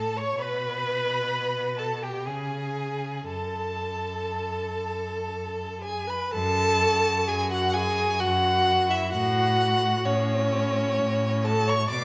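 A rich, reverberant recital-hall sound frames this melancholic, elegiac excerpt of a slow romantic string quartet movement in F# minor, moving in a rubato 3/4 at around 57-66 BPM, where one violin carries a smooth, even melody from the background while the second violin sings up front with vibrato, the viola adds expressive, soft-attacked portamento accompaniment, and a focused cello anchors the bass, all four bowing together throughout the 12 seconds as the harmony passes through Gadd9/B and C#5 to F#m and then F#m/A.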